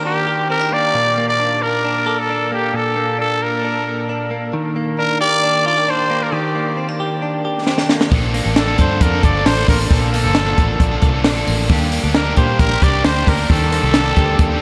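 A raspy, growling trumpet carries the melody over twangy, direct-recorded clean electric guitar arpeggios, both touched with analog delay, in this breezy, youthful jangly indie pop passage cut from a longer piece, until a drum fill at 7.7 seconds brings in a dark, up-front compact cocktail kit with a high-tuned snare, a round, foam-muted vintage fingered bass and an overdriven semi-hollow guitar with subtle chorus, all floating on Ebmaj7 and Bbmaj7 in a dreamy mix soaked in huge ambient reverb.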